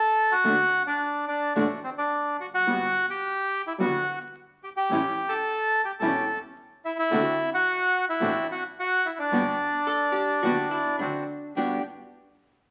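A rubato tango in 4/4 at 108 BPM and in G major, this elegant, nostalgic passage from a longer piece opens with a reedy, bright bandoneon melody, close-miked and up front, while a dark, fingerpicked nylon-string guitar, a second bandoneon adding stabs in the background, and a clear, earthy bowed double bass with light vibrato join at 0.4 seconds. At 9.9 seconds a clean, hollow-body archtop guitar adds a picked second line. The chords move from D through Gmaj7, A7 and D7. The sound of a very old 78 rpm record, with vinyl crackle and moderate large studio reverb, lends the whole a faded, period charm.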